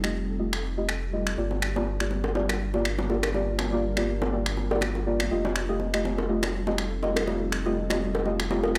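Dry, gritty and lightly reverberant, this short cut from a longer afro house track carries an earthy, spiritual mood at 122 BPM in 4/4, with a gentle 16th-note swing and tuning set to A4 = 438 Hz. A deep, round sine sub bass sits up front with a fast attack and sustained notes. Electronic finger snaps are bathed in studio reverb, and from 1.5 seconds tight, high-tuned acoustic bongos join from a distance, as if heard in a large room. Mellow, dark chord stabs with a warbling vintage character decay through chorus and tape echo under a filter sweep. Behind them, an ethereal, airy pad of detuned unison voices with a sub octave holds long chords through ensemble chorus, tremolo, built-in reverb and its own filter sweep. The harmony moves from F9 to Gm7 and returns to F9 at 5.3 seconds.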